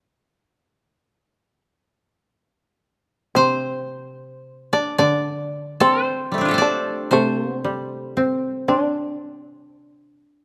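A buzzing, plectrum-plucked shamisen carries a percussive second line through this calm, austere fragment of Japanese chamber music, moving freely in rubato at roughly 50-60 BPM in a G suspended pentatonic mode. Two dry, woody kotos played with fingerpicks sit up front, one shaping the melody and the other supporting it, until the accompanying koto carries on alone from 9.2 s to 10.4 s. Close, detailed microphones and light reverb give the acoustic instruments an intimate, precise presence.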